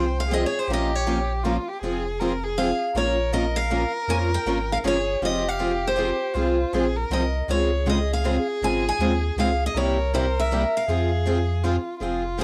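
Acoustic string swing in the jazz manouche style, swinging and fiery in a lilting 3/4, with a bright, picked steel-string guitar carrying the melody up front, finger squeaks and all, over a cassette-tape grain, while a violin adds a warm, expressive second line with vibrato and portamento. A second picked steel-string guitar with fresh strings and a boxy swing-style guitar further back fill out the accompaniment, and a deep, clean sine sub bass sits up front beneath them. The harmony moves through minor chords toward a Dbmaj7 and a C7b9 before returning home near 10.9 seconds, all heard in a small, homey room on cassette, cut from a longer piece.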